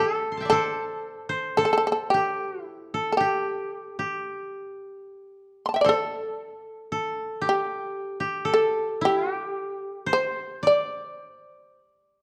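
A bright, buzzing shamisen carries the melody from the first moment, plectrum-plucked and percussive with a powerful, up-front presence, while a woody koto played with fingerpicks adds a second line in the same register, quieter but close. This austere, calm piece of Japanese chamber music moves at a rubato 56 BPM in 4/4. A moderate recital hall reverb surrounds the pair in a dark, warm production, and the 12.2-second passage is cut from a longer work.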